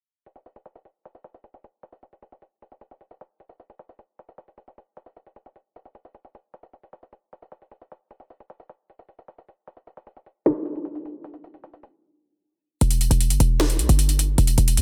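Overdriven electronic trap drums with a sharp snare and metallic hi-hats open this dark, menacing half-time hip hop fragment under a filter sweep that runs until 12.8 seconds, with the kick dropping out briefly and a break arriving at 12.0 seconds before a punchy, tight 808-style bass, a sine tone with a noise layer and a fast attack, enters up front at 12.8 seconds, all set in light reverb within a dense, heavily limited, low-pass-filtered master.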